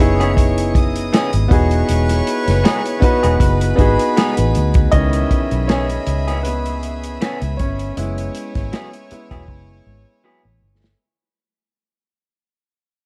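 Swung sixteenths at 79 BPM drive this lush, cinematic 1970s-style soul in C# minor, where a dry, muffled drum kit and a round, foam-muted electric bass sit up front beneath an intimate baby grand piano, a slightly broken-up guitar riff, floating sul tasto chamber strings and smooth horn stabs that drop out at 4.5 seconds, before the piano takes a solo from 4.9 seconds as the fade-out begins and a drum fill arrives at 9.5 seconds.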